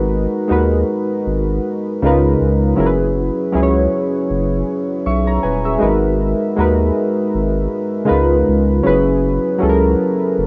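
Warbling, detuned lo-fi synth keys with a chorus shimmer open this nostalgic, reflective hip hop excerpt in G# minor at 79 BPM, with a lightly swung 16th-note feel, and a saturated sub bass sits deep and thick beneath them from the start. Both parts stay up front throughout, moving through mellow G#m7, C#13 and F#9sus4 chords, with the keys' decaying tones carrying a filter sweep. Light reverb and the rough cassette-tape character of a home demo lend the whole cut a hazy, reflective feel.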